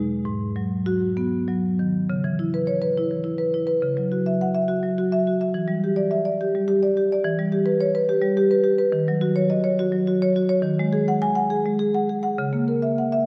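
A mellow, woody marimba played with soft mallets sits up front in this hypnotic, reflective contemporary classical solo, spanning a range from low E2 to G#5 in a rubato 6/8 through drifting chords such as G#m7, Esus2/C#, Em7 and D#m7 before settling on C#m6, with a brief opening giving way to a longer passage at 2.1 seconds, all bathed in a wet concert hall reverb in this fragment cut from a longer piece.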